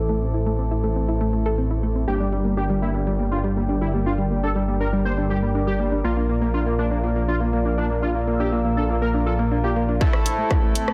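A straight 4/4 pulse at 121 BPM drives this dark, cinematic melodic techno cut in A phrygian, taken from a longer piece, with sidechain pumping breathing through most of the synths. From the start, a smooth, warbling vintage pad holds sustained chords under a filter sweep, while a soft, round pluck spins chorused arpeggios through cassette-tape grit and tape echo, and a nasal, edgy sync-sweep polysynth adds full-bodied stabs. Beneath them a menacing, detuned saw bass swells and evolves, saturated and up front, until 10.0 s. At 2.1 s a thick, bold unison lead enters with a bright, wave-folded melody carrying vibrato, analog chorus and delay, as the harmony moves from Am through Gm and Bb back to Am. Only at the very end does a distorted, layered electronic kick land at 10.0 s, joined by a tape-warm analog drum machine's filtered hi-hat and rim click, all set in a moderate digital room reverb.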